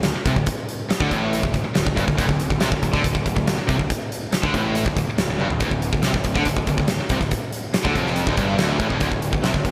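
A heavy, menacing hard rock excerpt in D minor at 140 BPM opens with a huge arena drum kit up front, its fat snare and punchy kick pumping through gated reverb, while two bright picked guitars, one cranked and overdriven with harmonic tremolo, the other scooped and high-gain, grind out a low riff in the background over a fuzzy overdriven bass, all set in a lush hall with bright 1980s-style digital production and a drum fill at 5.4 seconds.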